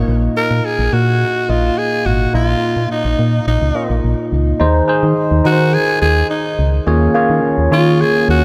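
Moody and nostalgic, this short excerpt of 1980s-style pop moves at 106 BPM in a straight 4/4, with a bright tine electric piano run through a phaser and a punchy, round FM bass with a dark, decaying tone and a fast attack. A raspy, gritty alto saxophone enters at 0.4 seconds to carry the melody with vibrato and a touch of delay, all three parts sitting up front in a small room with light reverb. The harmony opens on Bbsus4, then shifts at 4.6 seconds to Ab/Eb and at 6.9 seconds to Bbm7/Eb.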